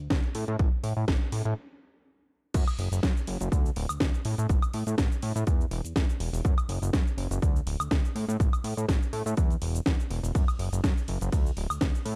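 Filtered disco house at 123 BPM in 4/4, with a light swing on the sixteenths and a nostalgic, funky mood, cut from a longer piece. A fat analog bass built from detuned sawtooth and wave-folded triangle tones sits up front from the start, its low-pass filter sweeping during the opening build-up and its sustained notes pumping against the sidechain. An overdriven electronic kick with a punchy, layered character joins at 0.1 seconds alongside a house drum kit of crash, ride, hi-hat, shaker, woodblock and a cracking snare, whose hats, cymbals and percussion also pump with the sidechain. After a brief stop from 1.6 to 2.5 seconds, the drop lands and carries the groove to the end. The drums carry the air of a large room, while the overall production stays dark and dry, with little reverb.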